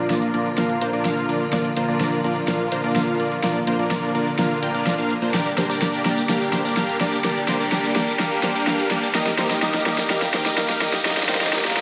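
Euphoric and uplifting, this festival progressive house build-up at 126 BPM in Bb major pushes a huge, thick detuned supersaw riff up front through a low-pass filter sweep and tape echo, over a rich background string section holding sustained chords, a barely audible saturated sub bass, an overdriven big-room drum kit with a huge snare, hi-hat and tambourine playing a fill throughout, and a very quiet riser entering at 5.1 seconds, all moving from Bb through Gm to Eb in a reverberant digital room.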